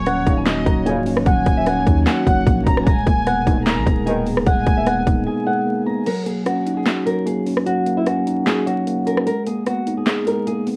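Melancholic and eerie, this half-time trap beat at 150 BPM in Eb minor sets a boxy, fingerpicked flamenco guitar melody over a mellow tine electric piano, a gut-string chamber violin section with tape echo, a breathy pad, a deep sine 808-style bass that stops at 5.3 seconds, distant brass stabs and an overdriven trap kit with hard-clipped kick and metallic hats, all steeped in worn cassette warble and vinyl crackle.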